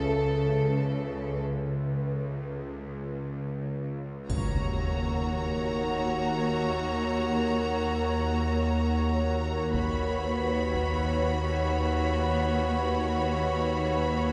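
This cinematic suspense cue, cut from a longer piece, drifts in free time with a mysterious, uneasy mood, opening on a bright, vibrato-laden violin section melody over a glassy, ethereal FM pad with ensemble chorus, while a clear cello section, a rich double bass section and a tense, sawtooth-edged bowed-like drone hold the low end. After a break from 1.5 s, an electronic impact lands at 4.3 s as the music settles into Eb minor, bringing in a distant second violin line, very quiet hard-stick taiko drums that stop at 11.1 s, and a brief, dry triangle in the background. The strings bloom in a wet scoring-stage reverb heard from further back in the room, giving the cue a hazy, shadowed sheen.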